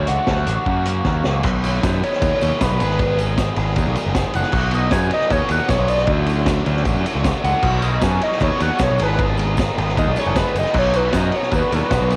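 This wistful, jangly indie rock cut has the small-room ambience of a home cassette recording, and it is taken from a longer piece. A vintage acoustic drum kit sits up front with a punchy kick, high-tuned snare and dark, rolled-off cymbals, joined by a growling, overdriven picked bass and two bright, overdriven electric guitars playing picked riffs in the background. A short drum fill launches a screaming analog synth lead solo at 1.4 seconds: gritty, guitar-like and saturated, with phaser, vibrato and an analog delay. The soft, flute-like tonewheel organ enters with that solo, holding very quiet sustained chords through a slow rotary speaker with key click, while a jingly, close and dry tambourine adds sparkle behind it. The rawer garage guitar, tinged with chorus, drops out at 1.9 seconds and returns at 7.6 seconds. Underneath, the harmony moves between lush major-seventh chords and a minor-seventh chord, keeping the bittersweet feel.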